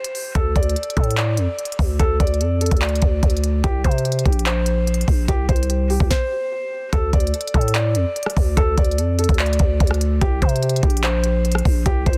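A half-time trap groove at 146 BPM in 4/4 drives this dark, melancholic hip hop excerpt in D minor, with a knocking kick, sharp snare, crisp hi-hats, handclaps and rim clicks sitting up front, joined at 0.4 s by a growling, buzzy 808-style bass. Over it, a soft felt-muted upright piano carries the melody with delay and audible action noise, giving an intimate, mellow cast to the chords that move from D5 through a rootless Gmadd11/Bb to C7(no3). A brief stop from 6.1 to 6.9 s divides the two sections, and the dry, dense, heavily limited master keeps the low end and drums forceful and close.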